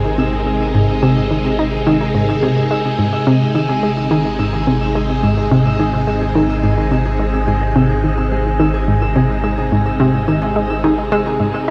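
A straight 4/4 pulse at 107 BPM carries this expansive, luminous ambient piece, cut from a longer work and centred on Ab: a swirling, vintage phased string machine holds up-front sustained chords through ensemble chorus and phaser, a ringing, fingerpicked Celtic harp spills arpeggios into tape echo and shimmer reverb, a round, nasal analog pluck with a fast attack repeats a chorused, tape-echoed riff, and a fat, thick analog bass with a filter sweep sits on a low Ab, with a huge ambient reverb and dark production enveloping the whole.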